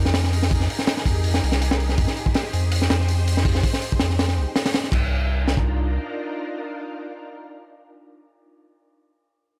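A crunchy breakbeat drives this short drum and bass cut from a longer jungle piece at 163 BPM in straight 4/4, its crash, hi-hat, tight kick and high-tuned snare sounding gritty and dark with a rolled-off top, sitting up front until 5.7 seconds. Beneath it, a thick, saturated sub bass in C minor holds deep sine tones between C2 and F2 through tube saturation, a filter sweep working on it through the first 4.9 seconds before it drops out at 6.0 seconds. Hovering quietly behind both, a silky string machine sustains vintage, warbling chords with a slow attack and long release, colored by ensemble chorus. The harmony moves from Fm11 to Cm11 at 4.9 seconds, and the strings linger alone in a small room ambience until 8.6 seconds. The mood is frenetic yet nostalgic, the restless drums set against the soft, hazy pad.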